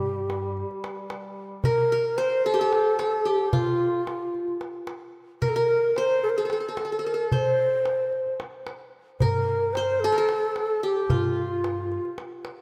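A lush, wet hall reverb hangs over this rough home-demo fragment of a Turkish makam ensemble in G makam ussak, moving in a straight 7/8 at 222 BPM in eighths with a hypnotic, longing mood. An up-front, breathy ney carries the hollow, vibrato-laden melody over a clay-shelled darbuka with a natural skin, while a distant, roomy duduk holds a mellow, scooped drone only until 1.7 s and a woody pizzicato upright bass sounds briefly at the start and again from 9.2 s. From 1.6 s a bright-edged qanun, played with fingerpicks on triple strings, joins up front as a second line in the same register as the ney.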